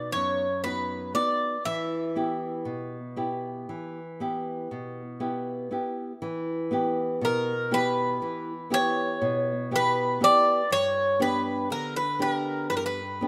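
This is a piece of Greek folk music for a small bouzouki band, dark and wistful, moving at 120 BPM in 9/8 with a straight feel. It is cut from a longer piece and sits in E dorian with a raised fourth. The Greek bouzouki carries the melody in a high, narrow register, its picked double strings giving a warm, metallic ring, with some strings doubled at the octave. Beneath it, a fingerpicked nylon-string guitar supplies the accompaniment over a broader range, its fresh strings sounding small and warm. Both instruments sit up front and play throughout, with the harmony moving from B to Em at 1.7 seconds, a new section beginning at 6.2 seconds, and a turn to G at 10.7 seconds. Light reverb surrounds the pair in a rough home-demo mix.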